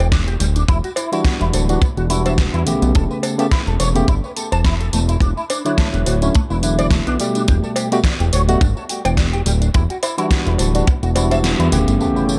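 A fat, detuned sawtooth analog bass sits up front in this groovy, sensual nu-disco excerpt, joined by a tight acoustic kick, a close cowbell in the background, and an overdriven, layered pop kit of hi-hat, deep snare and tambourine over a lightly swung groove. A twangy, scooped envelope-filtered guitar riff with ensemble chorus and tape echo weaves through lush ninth chords, while a barky tine electric piano with sidechain pumping enters at 1.1 seconds. After a band accent and the kick dropping out at 11.4 seconds, an airy unison pad and an electronic impact arrive at 12.0 seconds, all within a lightly reverberant, echo-heavy mix.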